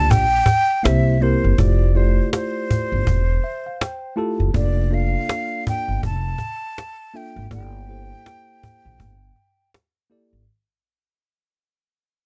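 Nocturnal, mellow jazz-hop with a swung feel, where a breathy, straight-toned metal flute carries the melody up front over a worn, slightly out-of-tune tine electric piano that adds a fill from 3.1 to 4.5 seconds, a woody pizzicato upright bass, and a snappy, close cajon struck with hard hands, all captured in a dry, gritty hardware recording with transformer saturation as this portion of a longer piece fades out.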